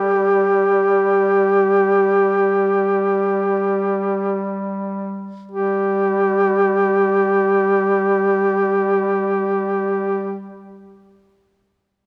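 A duduk carries the melody up front with a soft attack, vibrato and scooped notes, while a second duduk holds a low drone that sits distant and roomy beneath it. This solemn, mournful Caucasian folk passage, cut from a longer piece, slows over its first 5.5 seconds before moving into a new section. The hall reverb and dark, warm production lend the pair of reeds a hushed grandeur.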